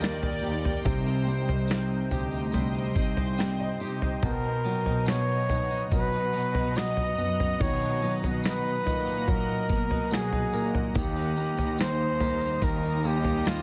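A tender, hopeful pop ballad at 71 BPM in 4/4, cut from a longer piece, opens on Eb with a floating, pure violin section that drops out at 2.5 s, over a woody upright piano with audible action noise, a dark bowed cello section carrying the bass, very quiet picked steel-string guitar arpeggios, a shimmering pad with chorus, phaser and built-in reverb, a muffled, pitched-down sampler-style drum kit with a thumpy kick, and a distant, jingly tambourine; the piano plays a fill from 3.0 s before an up-front, mellow flugelhorn takes the melody at 4.2 s over Bmaj7, the whole set in a small room ambience.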